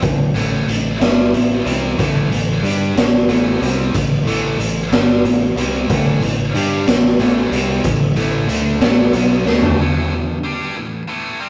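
Dark and cathartic, this cut from a longer quiet-loud alternative rock piece moves in a slow 6/8 at 62 BPM in A minor, sitting on an A minor chord. A dark, clean, fingered electric guitar plays phaser-tinged arpeggios in the background at the start while a bright, high-gain guitar grinds out a heavy distorted riff, and a growling, overdriven fingered bass holds the low end. The raw garage drum kit sits up front, lo-fi and gritty with a punchy kick, a medium-tuned snare, hi-hat and toms, sounding muffled with a rolled-off top in a bright stone room. At 2.0 seconds the mellow arpeggios stop and a warm, overdriven semi-hollow guitar takes up a riff in the background. A drum fill leads into a shift to an A5 power chord at 9.8 seconds, where the heavy guitar carries on alone until 11.5 seconds. The whole thing has the rough, lightly reverberant feel of a rehearsal-room recording.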